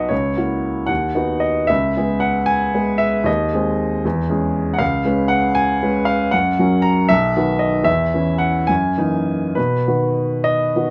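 A clear, polished baby grand piano plays alone through this passionate, hopeful romantic character piece in a rubato 6/8, its up-front tone ringing with long sustain in light reverb as the harmony winds from F#7/C# through C#m7 and F#13 to settle on B at 9.6 seconds.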